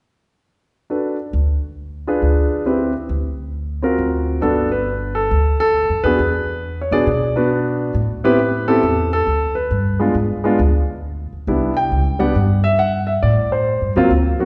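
A polished, present baby grand piano opens at 0.9 seconds, carrying the melody in a relaxed, sophisticated jazz piano trio passage in G major at 136 BPM with a gentle swing. An up-front upright bass joins at 1.3 seconds, its woody, thumpy gut-string pizzicato holding the low end beneath chords such as Gmaj9, E7(no3) and Cmaj7. The pair sits in a lush concert-hall reverb with a softened top end, and the fragment is cut from a longer piece, ending at 14.5 seconds.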